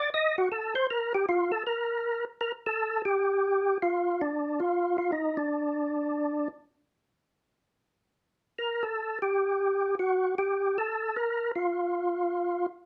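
A lone tonewheel organ opens this bluesy, late-night jazz fragment in G minor, swinging at 156 BPM in 4/4 and cut from a longer piece. Its tone is full and clean, with a percussive third-harmonic attack, chorus vibrato and a slow rotary speaker, and it sits up front in a moderate club room. The organ carries the whole 12.7 seconds by itself, moving into a new section at 2.4 seconds while staying in the range of D4 to Eb5.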